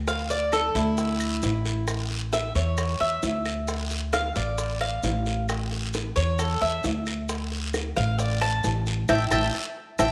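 Latin Cuban son and guajira in D harmonic minor at 133 BPM, danceable and nostalgic, cut from a longer piece: an up-front picked Cuban tres with metallic double strings and tape echo solos in arpeggios throughout, over a dark, thumpy pizzicato upright bass, tight high-tuned bongos, a raspy guiro, grainy maracas and woody claves entering at 0.5 seconds, all in a moderate echo chamber reverb, with a band accent from 9.1 seconds.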